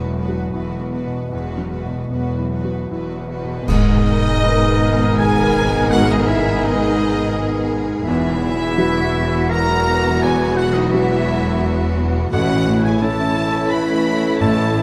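Cinematic, emotional film score for orchestra in a rubato 3/4, moving and sorrowful in mood, cut from a longer piece. A rich, lush violin section carries the melody with focused vibrato, while a second violin line, a dark viola section with soft attacks, and a felt-muted upright piano sit in the background, the piano intimate and vintage with audible action noise. A concert harp rings out very quiet fingerpicked arpeggios, and rich cellos and distant double basses anchor the bass. At 3.7 seconds the music opens into its second section with an accent from dark clash cymbals and a close concert bass drum, as a roomy oboe and a mellow clarinet add solo second lines and a French horn section holds sustained chords. The harmony moves from Esus2 to G#madd9, back to Esus2 and finally to A, all set in a moderate scoring stage reverb.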